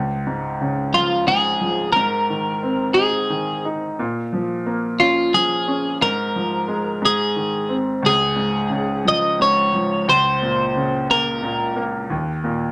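A moderate studio reverb gives this tender, swaying pop passage in D-flat major a sense of space, with a clear, open concert grand piano up front, its deep bass anchoring the accompaniment from 0.0 seconds. At 0.9 seconds a clean, compressed twelve-string electric guitar enters up front with a picked melody in its upper-middle range, sounding somewhat louder than the piano. The gentle 6/8 lilt moves at 59 dotted-quarter beats per minute through a short stretch of a longer piece, with the guitar stopping at 11.8 seconds as the piano carries on.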